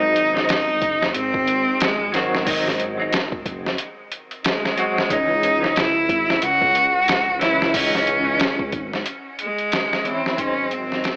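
A bright, bowed cello with vibrato carries the melody up front in this dark, cinematic trip hop fragment, over a clean semi-hollow electric guitar with tremolo, both coated in 12-bit sampler grit, cassette tape and tape echo, while a deep, rumbling detuned saw bass and a gritty, pitched-down sampler drum kit with a thumpy kick and overdrive push a swung groove from G#7 to C#madd9, the mix sounding like a home cassette heard over AM radio with light reverb until it fades out from 8.6 seconds.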